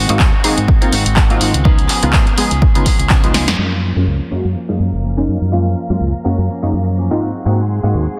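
A dense, heavily limited modern mix with light digital reverb opens this sunny, feel-good filtered disco house excerpt, where pumping, low-pass-filtered parts give a swung groove. A twangy clean electric guitar riff, a dark, round fingered electric bass with tube saturation, and a funky, detuned sawtooth polysynth comp with chorus and phaser play throughout, while a punchy, up-front electronic kick and an analog drum machine with snare, handclaps, hi-hat and crash cymbal drive the first half. After a drum fill at 3.3 seconds and a band accent, the drums drop out as lush, vintage string-machine chords enter at 3.6 seconds and a filter sweep runs to the end.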